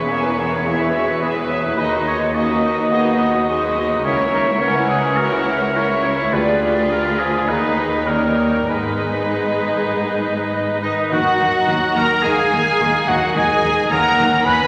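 A wet concert-hall reverb surrounds this restless, dramatic fragment of a fast romantic symphonic movement, taken at 96-110 BPM in 4/4 with a rubato feel, moving from G# minor into Eb minor at 11.1 s. A lush, rich violin section sings the melody with vibrato. A second, very quiet violin section, a bright flute section, a roomy solo oboe and a background clarinet weave secondary lines over bassoon and a distant viola section in accompaniment, ringing harp arpeggios, and focused cellos with soft-attack double basses in the bass, while a mellow French horn section sustains chords. Clear, very quiet trumpet stabs arrive at 10.8 s, and a dark tuba and sustained trombone chords join from 11.1 s.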